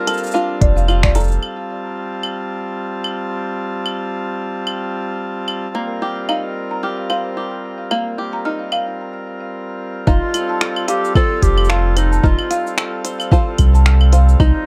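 A dark, lightly reverberant production gives this delicate, hopeful folktronica fragment a soft glow, cut from a longer piece in F mixolydian at 111 BPM with a gentle sixteenth-note swing. A reedy, hollow accordion holds sustained chords throughout, its band-limited tone roughened by vintage sampler grit, while a twangy fingerpicked banjo plays percussive arpeggios through a digital delay. A woody marimba struck with medium hard mallets adds a dry, rustic second line, and an overdriven organic electronic kit ticks along with cabasa, claves, finger snaps and smooth hats that sound re-recorded in a small room. After a break from 9.0 to 10.1 seconds, the opening section returns at 10.1 seconds, bringing back the bright, classical-style clarinet melody along with a round, up-front sine sub bass and a soft, overdriven electronic kick. The harmony moves from Bbmaj7 through F and Cm7 before settling on F7.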